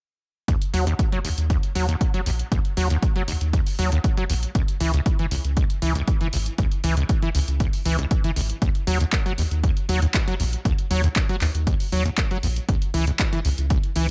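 A digital ambience frames this raw, hypnotic acid house excerpt, where a squelchy, resonant sawtooth acid bass riff with filter sweeps sits up front, driven through overdrive, ensemble chorus, tape echo and sidechain pumping from 0.5 seconds. A punchy, tape-warm electronic kick also sits up front, alongside an analog drum machine of handclaps and hi-hat that sounds re-recorded in a small room. A round, deep and dark analog bass enters at 0.7 seconds with its own sidechain pumping, underpinning a loop that shifts between Ebm and Dbm chords.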